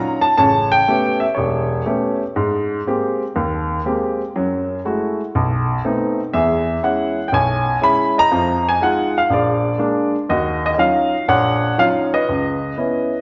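Swinging and smoky, this short solo jazz passage, cut from a longer piece, features a lone upright piano whose woody, polished tone sits up front with long sustain across its range from E1 to B5. The harmony moves through rich extended chords such as A9, Abmaj9, B7b9 and Ebm9 over swung eighth notes in 4/4. A lush scoring-stage reverb with a 1.8-second tail lends the sound of a church or concert hall, while a rounded, softened top end gives the piano a mellow glow.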